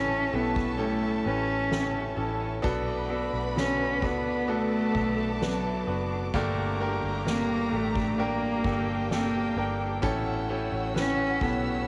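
This emotional, hopeful pop ballad opens at once with a bowed solo cello carrying the melody up front, its tone focused and smooth with vibrato, over a brilliant grand piano accompaniment. A dark, woody violin section plays a close second line, while a lush, expressive string ensemble sits in the background holding sustained chords with vibrato and portamento. A clean, compressed electric guitar picks very quiet arpeggios, recorded direct, and a vintage foam-muted fingered bass adds a round, punchy low end. From 0.3 seconds a very quiet drum kit played with soft mallets joins, with a boomy kick, fat snare and dusky ride cymbal in a big natural room. The harmony moves from A7 through Bm7 and Gmadd9 back to A7, and the cello, violins, piano and strings carry the soft grain of cassette tape within a homemade, reverberant sound.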